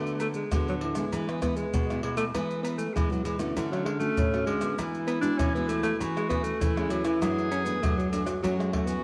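A breathy, mellow alto saxophone sings the melody up front with close-miked subtone and vibrato in this nostalgic, yearning samba-choro passage at 99 BPM, over fingerpicked classical nylon-string guitars playing accompaniment and a background bass line, with a small-room percussion bed of maracas, pandeiro, agogo bells, tamborim and a tight surdo struck with hard hands, while a vintage-toned clarinet enters at 3.6 s with a second line, and the whole is set in a moderate echo-chamber reverb as the harmony moves from D6 through Dmaj7 and Amaj7/E to F#m7.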